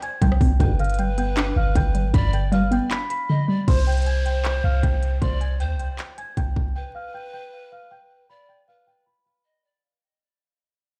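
Melancholic yet hard-hitting, this half-time trap fragment sets a worn, slightly out-of-tune celesta melody over a hollow, detuned square pluck, a trap kit of crisp hats and a hard-clipped kick roughened by 12-bit sampler grit, a deep, boomy 808 bass, a distant, breathy pan flute line and a brief mellow brass stab at 0.6 s, then after a silent gap it resumes at 3.7 s with a downlifter, a filter sweep on the celesta and a fade-out, with the mix drenched in large reverb and vinyl crackle, as if blasted through a big sound system in a bare room.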